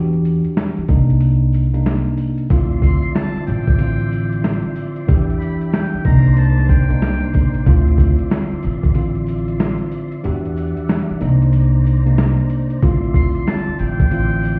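A mellow tine electric piano and a woody, growly pizzicato upright bass open this moody, tough boom-bap hip-hop excerpt, with a gritty, pitched-down sampler-style drum kit arriving almost at once, its thumpy kick, medium-tuned snare and hi-hat swinging and sitting up front beside the bass and piano. Very quiet, jingly sleigh bells ride close underneath, while the kick drops out for two brief stretches. At 2.5 seconds a clear, lightly overdriven tonewheel organ slides in with sustained chords, its key click, chorus vibrato and slow rotary speaker adding a soft shimmer far back in the mix. A brilliant yet thin trumpet with a metal mute enters at 2.8 seconds with a buzzy, soft-attacked jazz-style solo line trailed by tape echo, then returns at 13.2 seconds. The harmony circles through minor ninth and minor seventh chords, and the whole excerpt sounds muffled, as if heard through a wall, wrapped in stone room reverb and vinyl crackle.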